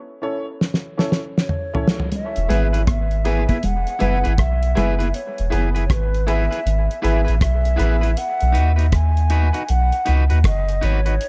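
Dub reggae with a spacious, laid-back swing opens on a break where a dry, fat-snared 70s drum kit plays a fill under clear, woody upright piano stabs soaked in dub echo, then an airy concert flute melody with vibrato enters at 1.4 seconds and, from 2.4 seconds, a deep, round sub bass sits up front, joined at 2.5 seconds by a twangy, slightly broken-up electric guitar, while high-tuned congas drift in the background until 5.1 seconds, all within a dark production with light reverb.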